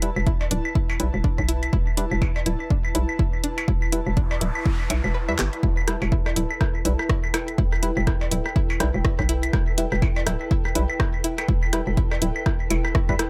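This hypnotic, quirky minimal techno excerpt opens with everything but the kick and percussion already running: a twangy, string-like resonator pluck riff set in the background with chorus, delay and sidechain pumping; nasal, organ-like percussive stabs with chorus and dub echo under a filter sweep; a hollow, bouncy FM bass that knocks down in the low register with its own pumping; an airy, breathy pad of soft, mellow texture; and a house drum kit of handclaps, tape-warm hi-hats and rim clicks. Within the first moments, electronic claves, percussion blips and rim clicks join, carrying dub echo and a small-room character, followed by a punchy, up-front electronic kick that anchors the swung groove. An electronic noise sweep passes through the texture at 4.1 seconds, the kick drops out at 5.1 seconds, and a drum fill follows before the kick returns. From 6.3 seconds a very quiet, flickering, grainy layer settles in beneath everything, with its own built-in reverb. 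The mix otherwise stays dry and close, keeping the focus on the pumping, tightly swung pulse around a single minor chord.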